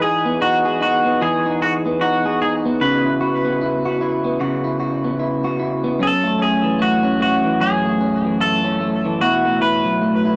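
A bright, twangy clean electric guitar carries the melody up front through lush chorus and tape echo, while a slightly broken-up electric guitar through a small old amp plays picked, compressed accompaniment with its own chorus and vibrato, both sharing a moderate room in this dreamy, nostalgic indie pop excerpt with a loose sixteenth-note swing, moving from Emaj7 through C#m7 and F#m7 to a B7sus4, all captured on a dry, gritty hardware recording.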